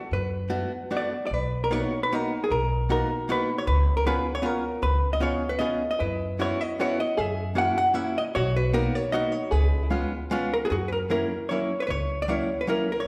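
A dark, compressed vintage hollow-body jazz guitar carries the melody up front in this whirling, bittersweet musette waltz at 153 BPM in B major, excerpted from a longer piece. A woody, thumpy upright bass and a clean, picked archtop guitar, miked and amplified, provide bass and accompaniment, while a mellow, plunky open-back banjo adds a fingerpicked second line from 6.0 to 10.5 seconds. The recital hall reverb, with a 1.5-second decay, gives the trio and banjo the resonant air of a church or concert hall.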